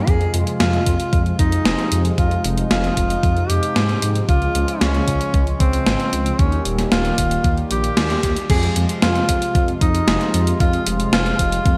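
A breathy alto saxophone carries the melody up front, its whispered subtone, soft attack and light vibrato giving this nostalgic, driving synthwave excerpt an intimate, jazz-style voice, with delay trailing its phrases. Beneath it, a warbling vintage analog pad holds sustained chords through chorus, and sidechain pumping makes it breathe with the beat. A deep, rumbling saw bass built from detuned unison voices anchors the low end with a beating, dark tone. From 0.1 seconds a thumpy electronic kick and a gated 80s digital drum machine drive the groove, the drum machine's crash, hi-hat and snare sitting up front with gated reverb and a tape-tinged character. The harmony moves from Fm through Db and Eb, a band accent lands at 8.0 seconds, and the progression returns to Fm as a new section opens at 8.5 seconds. The mix has a bright 1980s-style digital sheen with light reverb and digital ambience.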